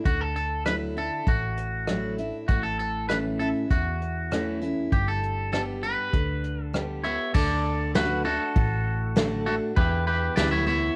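A straight, easygoing 4/4 shuffle-free groove from a soft brush drum kit with a fat snare and tight kick carries this sunny, down-home honky-tonk excerpt, where a full-bodied picked steel-string acoustic guitar with audible finger squeak and a round, foam-muted electric bass support a clean, twangy electric guitar melody washed in plate reverb, all with the hazy character of a home cassette recording, moving through chords from Dadd9, A and G to D and Em.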